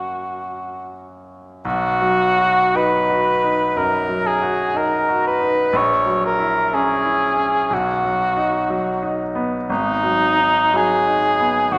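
A wet recital-hall reverb places the listener further back in the room, yet both players sit up front in this lyrical, romantic classical duo in B major, moving with a rubato feel at 53-63 BPM. The mellow cor anglais carries the solo melody with light vibrato in a classical style, while the brilliant, intimate grand piano accompanies with long sustain and audible action noise beneath it. This fragment of a longer piece settles onto B at 1.6 seconds and closes on a G#m7 chord at 9.7 seconds.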